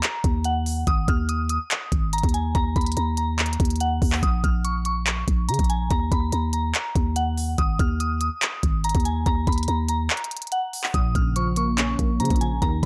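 Dark and hard-hitting, this short cut from a longer trap and hip hop piece rides a heavy half-time feel. A soft, pure FM synth bell carries the high melody from the start, its mellow tone shaded by chorus, a low-pass filter and digital delay. Up front, an electronic trap kit pairs a knocking kick with crisp hi-hats and handclaps, while a growling, buzzy 808-style bass arrives at 0.2 seconds with fast-attack, decaying notes. After a brief break from 10.1 seconds, a glassy, crystalline wavetable pluck joins at 10.9 seconds, its detuned, ring-modulated digital tone moving through a filter sweep and a shifting notch. The mix is dry and close, keeping the low end and drums punchy beneath the gentle bell.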